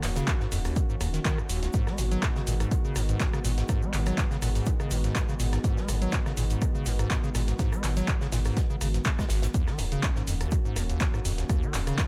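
A driving, gritty acid house groove at 123 BPM in 4/4 with a light 16th swing, built on an up-front analog electronic kick from 0.3 seconds, a punchy tape-warm drum machine of handclaps, hi-hat, rim click and shaker, a very quiet acoustic studio kit of hi-hat, shaker and snare, a deep round sine sub bass pumping under the kick, a squelchy, resonant square-wave acid bass riff with saturated filter plucks and analog chorus, and a smooth, detuned sawtooth pad holding sustained chords that move from Ebm7 to Abm7 and back, all in a dry mix.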